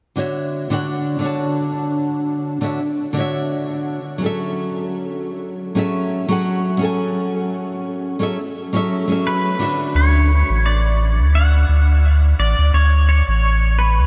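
A fingerpicked acoustic flamenco guitar opens this smooth, relaxed sunset chillout piece at 86 BPM with a gentle swing on the 16ths, sitting up front with analog delay over Dmaj9 and F#m9 chords. At 9.3 seconds a clean, twangy pedal steel guitar takes the melody with slide and volume swells, dressed in lush chorus and diffuse ambient delay, and a deep, round sine sub bass with tube saturation enters at 9.9 seconds. The flamenco guitar stops at 10.3 seconds as the harmony settles on Dmaj7, and the dreamy mix is soaked in a huge ambient reverb.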